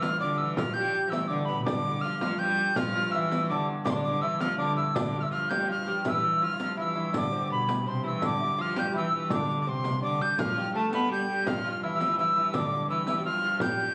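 Medieval dance in triple time, festive and rustic, with an airy, tongued alto recorder up front carrying the melody over a biting, gut-string viola da gamba and a delicate fingerpicked lute on second lines, a nasal hurdy-gurdy drone in the background, a small, close frame drum and a riq with bright jingles, the ensemble set in a wet recital-hall reverb and captured on a phone in the room, cut from a longer piece.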